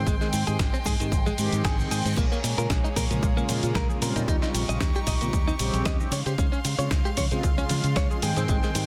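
A dense, heavily limited modern mix with light reverb frames this short nu-disco excerpt, sensual and sleek in mood, riding a gently swung 16th-note feel in 4/4. An overdriven, punchy electronic kick sits up front, layered with a gritty, tape-warm soul sampler-style kit of snare, hi-hat, ride, crash and cabasa, while very quiet, soft-handed cabasa and congas add close acoustic detail. A bright fingered electric bass with an envelope filter pumps against the kick, as do the round, dark synth brass, treated with chorus and delay, and a clear, biting studio violin section holding sustained chords. A clean, direct-recorded electric guitar plays a picked riff with subtle chorus and delay. A very quiet reverse cymbal sounds from 1.4 to 2.2 seconds, and at 2.2 seconds a faint, wave-folded analog pluck begins its arpeggios as the harmony moves through Abmaj7, Bbm7, Eb13 and Dbmaj7 before returning to Abmaj7.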